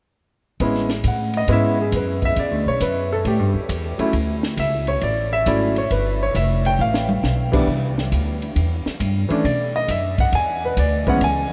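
Relaxed and warm, this short excerpt from a longer jazz piano trio piece swings along at 136 BPM in 4/4, centered on A major. A concert grand piano carries the melody up front from 0.6 to 11.5 seconds, intimate and natural with deep bass and audible action noise, ranging from E3 to G#5. Beneath it, a woody, thumpy pizzicato upright bass on steel strings sits forward in the mix, moving between F1 and B2. A compact cocktail drum kit with dark cymbals, a high-tuned snare and a punchy kick keeps time quietly on ride, hi-hat, crash and toms, adding a brief fill at 6.8 seconds. The harmony drifts through colorful chords such as Amaj9, Dmaj7sus2, G13 and Cadd9 before settling on E7, and a huge, wet ambient reverb places the trio in a vast, echoing space.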